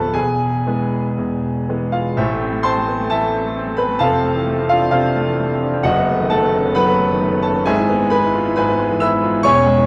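A bright concert grand piano carries this stormy, agitated classical piano study alone from start to finish, its brilliant upper register and deep bass spanning D1 to E6 with an open, up-front presence and long sustain. The playing moves with a rubato feel in 4/4, around 116-138 BPM, and is tuned slightly high to A4 = 441 Hz. After an opening on E, a new section begins at 2.2 seconds, passing through A minor, Fmaj7, B7/F# and E/G#. A moderate recital hall reverb gives the instrument a sense of space. The sound comes through worn, warbling old cassette tape, with a drifting pitch and a dulled top end, lending this fragment of a longer piece a faded, time-worn character.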